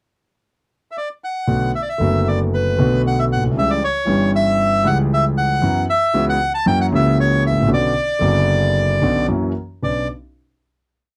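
A reedy, airy bandoneon carries the melody from 0.9 seconds, shaping a motif-based line in period phrases in this melancholic, passionate tango in B minor, played rubato around 115 BPM in 4/4. At 1.5 seconds a warm, intimate concert grand piano enters with deep bass, audible action noise and a vintage, smooth character, marking the tango rhythm in uneven groups of three and two eighths beneath chords moving from Bm7 through C#dim and F#7 to a closing Bmadd9. Both instruments sit up front in a dry, close 1970s-style studio sound with moderate booth ambience, and the short piece ends on a final chord.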